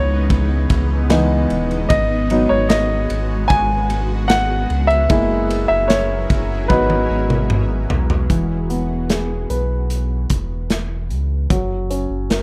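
A polished grand piano takes a solo passage in this emotional, melancholic pop ballad from the opening moment, set against a shimmering, ethereal pad with a slow attack, octave-up shimmer, chorus, phaser and its own reverb, while a deep, sine-toned sub bass with an added octave sits full and up front beneath. At 75 BPM in a straight 4/4, a punchy acoustic drum kit enters at 0.3 seconds with a medium-tuned snare, kick, hi-hat, ride and toms, its studio room pumping around it. The harmony moves through C#m7, G#m7 and F#7, and a drum fill starting at 6.7 seconds leads into a new passage at 8.3 seconds, where the pad falls away and the piano's solo passage comes to an end. The closing bars settle on E and then F#, with piano, bass and drums continuing to the end of this fragment of a longer piece. The overall sound is close and dry, with the piano's warm presence and the firm low end kept prominent.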